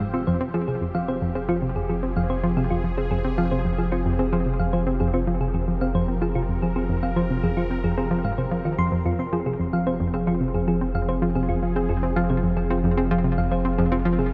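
A bright, up-front analog pluck with sawtooth bite and sub-octave weight drives a riff through this hypnotic, cosmic piece of sequencer-driven ambient space music at 111 BPM in F minor, resting on an Fm chord, while a tine-like, FM-voiced thumb-piano-style synth pluck spins mellow arpeggios under a filter sweep, an airy, detuned resonant pad fades in with evolving sustained chords, a deep sine sub bass holds F1, and a huge ambient reverb bathes this 14.3-second section cut from a longer piece.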